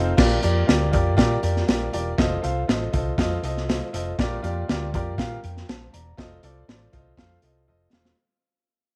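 A straight 4/4 groove at 120 BPM drives this short, uplifting slice of uptempo 1960s-style soul in F major, cut from a longer piece. A crunchy breakbeat drum kit sits up front with a punchy kick, a medium-tuned snare, hi-hat and dark crash cymbal, its gritty, saturated sound rolled off at the top and closed in like a small room. Beneath it, a hollow-body short-scale electric bass played with the fingers adds a round, amped low end with tube saturation. A clear concert grand piano with deep bass carries the accompaniment, also placed up front, as the harmony alternates between Bb6 and F7 every two seconds. Moderate spring reverb surrounds the joyful mix, which fades out across its whole length while a drum fill from 7.7 seconds closes the clip at 8.2 seconds.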